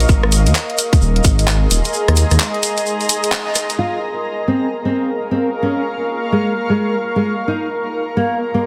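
An overdriven electronic kick drum sits up front with a tight, layered punch, arriving at 0.1 seconds just after the rest of this skippy, bouncy two-step UK garage excerpt in Bb minor at 130 BPM with a swung 16th-note feel. Beneath it, a deep, rumbling detuned saw bass beats darkly, while the overdriven garage drum kit adds handclaps, a filtered hi-hat and rim clicks, joined by a grainy, vintage tube shaker. Two pads carry the harmony from Abadd9 to Bbm7: a breathy, mellow pad with chorus sits in the background, and a cloudy, evolving granular pad drifts through its own built-in reverb, both pumping against the kick. At 3.8 seconds a thumb-plucked nylon-string guitar steps forward with a fresh, classical melody touched by tape echo. A lush hall reverb surrounds the dense, heavily limited modern mix, and a band accent lands just before the guitar's entrance.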